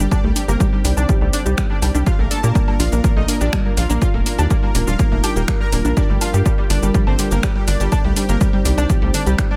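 A steady 123 BPM pulse from a punchy, tape-warm electronic kick drives this melancholic, hypnotic melodic techno excerpt, where an overdriven analog drum machine of finger snaps, hi-hat, shaker and woodblock clatters alongside a tight, sawtooth-edged sequencer bass, a fat, warbling vintage lead carrying the melody, a smooth soft supersaw second line, lush bright unison pluck arpeggios with phaser and a deep, ring-modulated dark pad, the bass and synths all pumping under sidechain through an echo-heavy, dry mix over Cm, Bb, Ebadd9 and Gm7.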